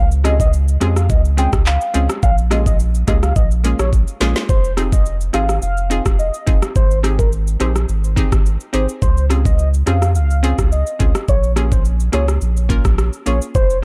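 A straight 4/4 groove at 106 BPM drives this bouncy, hypnotic dancehall excerpt: an electronic afro-pop drum kit with knocking kick, woody snare, metallic hats, handclaps, rim click and shaker sits up front beside a deep, round sine sub bass, while a hollow, detuned square-wave pluck with chorus and sidechain pumping carries the Dbmaj7 to Bbm7 chords and a velvety, vintage sawtooth lead with tape echo and vibrato sings the melody over a dark, warm production, with a drum fill at 3.9 seconds leading into the second section at 4.5 seconds.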